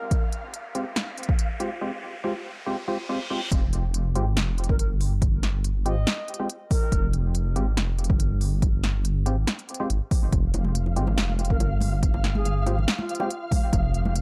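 Cavernous and meditative, this deep dubstep excerpt rides a half-time, lightly swung groove, opening with a riser, reverse cymbal and a flickering, grainy texture over a punchy, up-front electronic kick, smooth hats, snare and dark, hollow organ stabs treated with chorus and dub echo. At 3.5 seconds the drop lands with a deep, rumbling detuned saw bass, while a distant, airy shakuhachi with crisp chiff and vibrato surfaces in short dub-echoed phrases. Soft-handed bongos and congas sit close and dry in the background from 10.3 seconds, and the whole cut carries a gritty hardware grain within a digital ambience.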